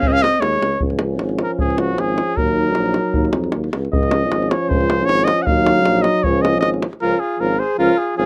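A lightly swung two-beat pulse drives this festive, wild Balkan brass band excerpt, with a tight, close davul keeping the beat until 7.0 seconds. A warm, distant tuba anchors the low end throughout, its light vibrato carrying a roomy feel. The up-front trumpet carries the melody the whole way and takes a classical-style solo from 0.8 seconds, over harmony that moves back and forth between D-flat and E-flat minor. Also entering at 0.8 seconds, a mellow, soft-attacked euphonium and a clear but faraway trombone sit in the background as accompaniment. A smooth-topped alto saxophone with vibrato adds a second line at the very start and returns for the closing stretch from 7.0 seconds onward. Light reverb lends the rough home demo mix a sense of space, and the clip is cut from a longer piece.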